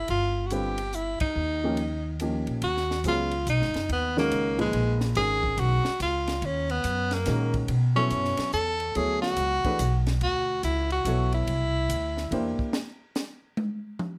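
Modal jazz in a swinging 3/4 at 142 BPM, spiritual and searching in mood, with a clear tenor saxophone leading up front, its light vibrato and scooped notes bathed in plate reverb, over a woody, growly pizzicato upright bass and an intimate baby grand piano whose short sustain and audible action noise color the harmony from G7sus4 through G#m11 and Bm11. A compact cocktail kit with dark cymbals, a high-tuned snare and a punchy kick sits dry beneath the band, which hits an accent at 1.1 seconds. The saxophone and bass stop at 12.6 seconds and the piano at 12.7, leaving the drums to solo until the excerpt ends at 14.2 seconds in a lightly reverberant room.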